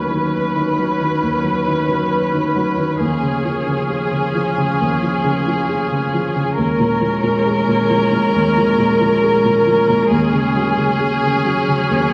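The rhythm moves in a rubato 4/4 at about 67 BPM, giving this reflective, melancholic neoclassical piece for piano and strings an unhurried, breathing pulse. A con sordino chamber violin section carries the melody, veiled and bowed with vibrato, sitting up front yet sounding somewhat distant. Beneath it, a felt-muted upright piano supplies mellow, intimate accompaniment with thick felt and short sustain, placed close to the listener. A single muted viola holds a soft-attacked line with vibrato and portamento, while one muted cello, dark and in the background, traces a second line with light vibrato and portamento. The harmony drifts from Badd9/D# at the start through Db/Eb and Bbm7/Eb to Gbsus2/Eb at 10.1 seconds, all wrapped in the wet reverb of a recital hall, in this passage cut from a longer piece.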